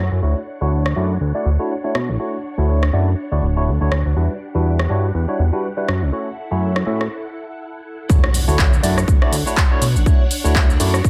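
A fat, detuned analog bass sits up front from the start of this joyful, funky filtered disco house excerpt, its thick sawtooth and wave-folded tone pumping with the sidechain and moving under a filter sweep through the opening 8.1 seconds. Around it, a swirling, warbling string machine holds sustained chords with ensemble chorus, phaser and a slow attack, while a barky tine electric piano, lightly overdriven through a combo amp with vintage 12-bit grit, supplies bright accompaniment over a Dmaj7, Em9 and F#m7 progression in D major. At 122 BPM in 4/4 with a swung sixteenth-note feel, a layered, overdriven house drum kit of handclaps, hi-hat, rim click and shaker comes in at 0.9 seconds, re-recorded in a large room. After a brief break, the drop lands at 8.1 seconds, where a punchy, overdriven electronic kick joins up front alongside a very quiet electronic impact. Light reverb gives the mix a sense of space, and the piece is cut from a longer track.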